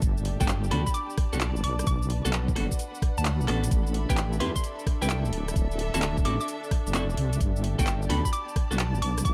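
A deep, dark wobble bass sits up front with a knocking, tape-warm electronic kick in this bouncy, moody two-step garage excerpt, while a punchy analog drum machine adds swung cabasa, handclaps, hi-hat and rim clicks. A hollow, detuned square pluck carries the melody with chorus and delay from 0.4 seconds, and a slightly broken-up electric guitar plays picked stabs with spring reverb. Underneath, a smooth analog pad in the background and a rich, bowed studio string section both carry sidechain pumping, moving through jazzy seventh chords in a digital ambience.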